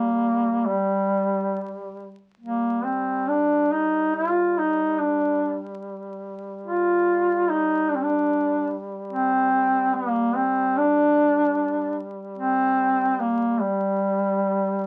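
A mellow duduk carries the melody up front, its vibrato and scooped notes lending a distant, roomy folk voice to this solemn, longing Caucasian lament in G minor, moving at around 72 BPM in 4/4 with uneven, rubato beats. Beneath it, a second duduk holds a dark, soft-edged drone on G3, much quieter in the mix, with its own vibrato and a smooth top. The 14.9-second excerpt, cut from a longer piece, sits in moderate studio reverb and carries the crackle of a very old 78 rpm record.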